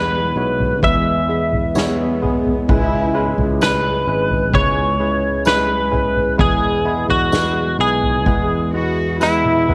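Heartbroken and emotional, this slow pop ballad at 65 BPM moves from E to C#m7 and back, led up front by a bright, twangy clean electric guitar recorded direct, with analog chorus and a cassette-tape grain on its compressed melody, over a worn, slightly out-of-tune tine electric piano, a full-bodied steel-string acoustic guitar picking arpeggios in the background, and a growly, punchy fretless bass. A soft-mallet drum kit with a boomy kick enters at 0.6 seconds, and at 1.8 seconds a dark, woody cello section joins with a bowed, vibrato second line touched by analog delay, alongside a jingly, distant tambourine. The drums close this excerpt with a fill at 9.2 seconds, all set in a light, small-room reverb with the intimate character of a home cassette recording.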